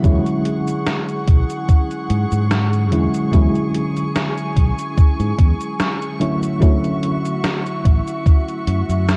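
A dark cassette-tape sound with light reverb frames this faded, woozy vaporwave fragment at 73 BPM in 4/4 with a slight sixteenth-note swing, where a mellow, warbling FM electric piano with tremolo, lush chorus and tape echo sits up front over a round fingered electric bass, a soft, intimate bowed string section holding sul tasto sustained chords, a thumpy electronic kick that stops at 8.4 seconds, and a gated 80s digital drum machine of cabasa, hi-hat and gated-reverb snare, as the harmony moves from E13 to Dmaj9 at 6.2 seconds.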